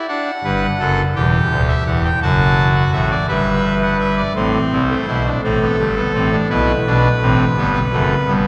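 Classical baroque-style four-part fugue for solo pipe organ on a brassy, bright trumpet stop with audible chiff and baroque voicing, lively and elegant at 56 BPM in dotted quarters in 6/8 in G major (tuned to A4 = 438 Hz), its line spanning D1 to A5 and sitting up front even as the listener seems placed further back in a cathedral whose 4.8-second reverb blooms around it, moving from a first passage over G, Dsus24, D/F# and G into a second beginning at 4.4 s on Am through Gadd9 and Bm back to G, in a short cut from a longer piece.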